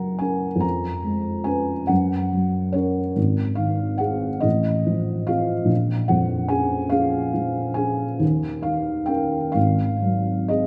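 A felt-muted upright piano, soft, mellow and intimate, sits up front in a wet scoring-stage reverb as it carries this tender, nostalgic romantic nocturne, drifting in a slow 6/8 at 47 BPM with free rubato and uneven beats, its harmony moving from Gb through Bbm7 toward a closing Ab7 across this 10.7-second fragment of a longer piece.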